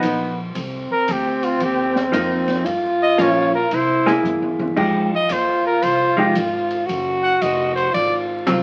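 Smoky and cool, this short excerpt of small-group swing and bop in C minor moves at 114 BPM with a swung feel, as a clear, punchy trumpet with light vibrato carries the melody over a dark, subtoned alto saxophone second line, woody pizzicato upright bass and an open drum kit with dark cymbals, a high-tuned snare and a drum fill at 4.2 seconds, while a clean, compressed hollow-body electric guitar enters at 2.1 seconds, all heard through moderate club reverb on a very old 78 rpm record full of vinyl crackle.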